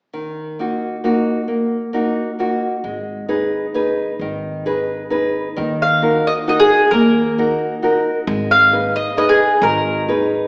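In a straight 3/4 lilt at 133 BPM, this wistful, romantic Italian folk serenade in Eb minor, cut from a longer piece, opens with a bright, fingerpicked nylon-string guitar alternating Ebm and Abm, joined at 2.8 seconds by a woody pizzicato upright bass and at 5.8 seconds by a mellow, round mandolin carrying the melody up front, all heard from further back in a reverberant recital hall with a small-speaker sound.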